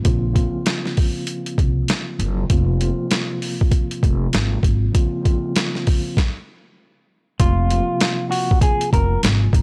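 Dry and gritty, this hardware-recorded cut from a longer boom-bap hip-hop track moves at a swung 98 BPM in Bb minor with a tough mood, as compressed, pitched-down sampler drums with a thumpy kick and an up-front, woody, growly pizzicato upright bass sit beneath a mellow tine electric piano, a break arrives at 4.9 seconds with a stop at 6.2, and a dark, clean, fingered electric guitar melody enters at 7.4 seconds.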